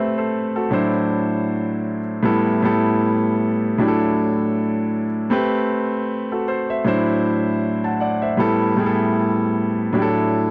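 A clear concert grand piano plays alone with deep bass, natural tone and long sustain, up front in a dry, close 1970s-style studio sound with light reverb, carrying a cinematic, silky soul excerpt in A dorian at a swung 78 BPM in 4/4 as it moves through Am9, D9/A, G69/A and E9sus4/A twice over an A pedal from 0.0 to 10.5 seconds.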